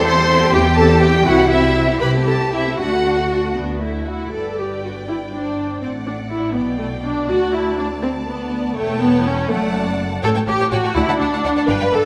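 Stormy and dramatic, this quick classical-period movement for string orchestra moves in a straight 6/8, heard as a passage cut from a longer piece. A chamber-sized violin section carries the melody high in its range with a focused, smooth-topped sound and vibrato, while a lush symphonic second violin section weaves a second line beneath it. The clear violas sit up front in the mix as the most prominent voice, supplying bowed accompaniment. Underneath, rich cellos and double basses share the bass with an even, smooth tone, the basses reaching down into a deep, full register. The harmony turns from C toward D in the opening section, then shifts at 4.3 s into a second section that moves through G and a series of A7 and D chords, ending on D around 11.0 s. A reverberant concert hall surrounds the strings, lending the performance a spacious, resonant depth.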